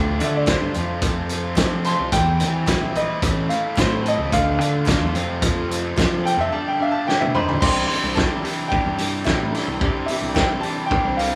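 Wistful and jangly, this indie rock cut, taken from a longer piece, has a straight, loose feel and the sound of a band playing live together in a large studio room. A bright, woody upright piano with a vintage character carries the melody and takes a solo from the start until 7.6 seconds. Beneath it, a cranked stack guitar plays an overdriven, picked riff, while a second electric guitar through a small old amp adds a slightly broken-up, compressed riff in the background. A punchy fuzz bass drives the low end, and a loose drum kit sits up front with a fat snare, a punchy kick and a gritty, saturated tone with a rolled-off top. Very quiet, crisp group handclaps add texture, and a drum fill at 7.1 seconds leads into a new section at 7.6 seconds where the harmony settles on a Cadd9 chord.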